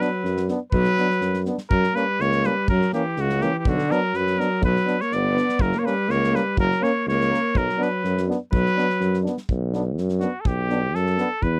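A nasal, straight-muted cornet leads this restless, virtuosic Balkan brass band excerpt in B harmonic minor at 124 BPM in 2/4, with a close-miked alto saxophone playing a second line until 9.2 seconds, a distant euphonium with light vibrato and a soft-attack trombone holding the accompaniment, a vintage tuba up front on the bass, and an acoustic kit with punchy kick and medium-tuned snare, all in a dry, close 1970s-style studio sound before the cornet takes a solo from 9.5 seconds over chords moving between Bm and F#.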